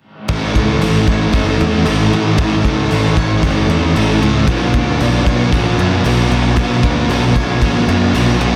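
A straight 4/4 pulse drives this blissful, hazy stretch of shoegaze and dream pop rock, cut from a longer piece, with a raw garage drum kit of punchy kick and hi-hat sitting dark and gritty in the background of a bright stone room. Up front, a crunchy overdriven guitar riff trailed by reverse reverb stacks with a thick fuzz guitar coated in ensemble chorus, while a direct, punchy electric bass anchors the low end. Behind them, a shimmering, octave-doubled twelve-string acoustic guitar picks arpeggios through lush chorus and tape echo as the harmony moves from A to Bmadd9 at 4.5 seconds, within a dense, heavily limited modern master.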